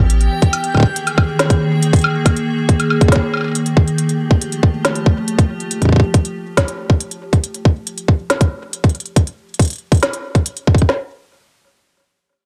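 A straight 4/4 groove of organic electronic drums drives this glitchy, melancholic IDM piece, cut from a longer work. One kit sits up front with a tight kick and a woody snare. A second, quieter kit adds crisp hi-hats, snare and woodblock through a tape echo, and both kits carry a tape-warmed, small-room character. Over the drums, an icy glass pad holds sustained chords with a slow attack and long release, its detuned, crystalline sound shimmering with chorus and reverb while a filter sweep moves across it until it stops at 7.4 seconds. In the background, a reversed, granular texture swells dreamily on one high note and ends by 4.0 seconds, while the pad and drums carry on. The production is dark with light reverb, and the track shifts into a brief new section at 10.9 seconds.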